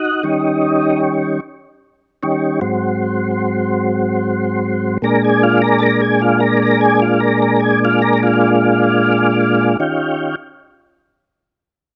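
A smooth, clean tonewheel organ sits up front, holding sustained chords through a slow rotary speaker with chorus vibrato and a hint of key click as it moves from Eb7 to Ab7 and Bb7. This swaggering, rollicking blues in 12/8 has the organ alone from the start until 9.8 seconds, when it returns to Eb7 and rings out to 10.4 seconds. A moderate spring reverb adds a digital ambience to this cut from a longer piece.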